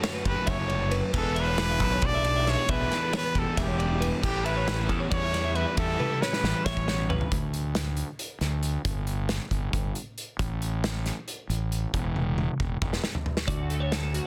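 Counted in eighths at 272 BPM in a straight 7/8, this playful, bright math rock and midwest emo passage, cut from a longer piece, moves through Dmaj7/F#, E7sus4 and A7 in D major. A loose, up-front indie drum kit in a small, pumping room drives it with dark cymbals, a tight kick, a medium-tuned snare with soft clipping, and two drum fills. Up front alongside it, a growly fuzz bass with overdrive stays punchy, while a close-miked solo trumpet carries a pop-style melody with light vibrato. Two twangy, clean, compressed twelve-string electric guitars fill in the accompaniment and higher arpeggios, one thickened by ensemble chorus and the other, in the background, touched with spring reverb. A crunchy, double-tracked overdriven guitar riff sits behind them, also with spring reverb. At 7.3 seconds the harmony drops out and the guitars stop, leaving drums and bass to push on until the twelve-strings return on a Dmaj7 at 13.5 seconds, all within a dry, dense and heavily limited modern master.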